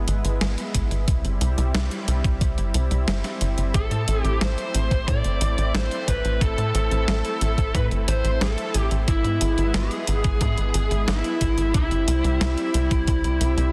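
This moody, nocturnal synthwave piece, cut from a longer work, opens with a lush, detuned unison pad holding sustained chords, its chorus-treated tone airy and bright. Beneath it sits a tight, punchy sequencer bass with a nasal sawtooth bite and a decaying filter pluck. Both parts pump with sidechain, and a clean 12-bit drum machine joins at 0.1 seconds with hi-hat and a medium-tuned snare, overdriven and heard in a large room. A thumpy electronic kick arrives at 0.7 seconds, also overdriven, carrying the sound of a small room. At 3.7 seconds, as the harmony moves to A minor, a dark, distorted, bluesy electric lead guitar comes up front to carry the melody with picked notes. Light reverb surrounds the mix, and the master is dense and heavily limited.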